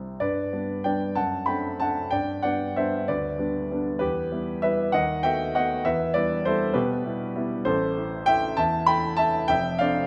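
In an uneven, rubato 3/4 lilt at 194 BPM, this elegant and playful classical piano waltz in G major features a solo grand piano, natural and up front, ranging from F1 to B5 in a moderate recital-hall reverb, moving from G through E minor to A minor over a brief passage cut from a longer piece.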